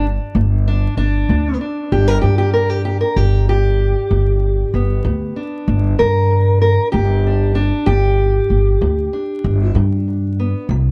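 Laid-back and rollicking, this short cut from a longer acoustic country blues piece sits in G major at 64 BPM in a straight 12/8, with a fingerpicked steel-string acoustic guitar carrying the melody as a solo across the full 10.9 seconds. The guitar has a boxy, parlour character touched with tape echo, while the upright bass underneath is plucked on gut strings for a woody, thumpy low end, both parts sitting up front. Light reverb, a dark, warm production and a layer of vinyl crackle round out the recording.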